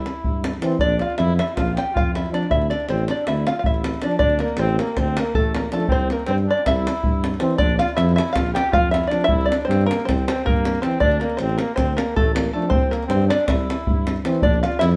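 An open-back banjo carries the melody in this fingerpicked, twangy, plunky line, sitting high over a Balkan brass band groove in 9/8 at 317 BPM counted in eighths, with a straight feel in D minor. A tight, compressed, saturated davul sits up front and drives the restless, bittersweet mood from 0.1 s. Beneath them, a mellow tuba with a smooth top holds down the bass, while a distant, roomy flugelhorn with warm vibrato plays a second line in classical style. From 0.6 s a euphonium with light vibrato and a trombone tucked in the background fill out the accompaniment in a narrow middle register. The harmony cycles through C, Bb and D5, and an opening phrase gives way to a repeat of the same material at 4.2 s. The band plays live in one stone room with moderate reverb, and this cut is taken from a longer piece.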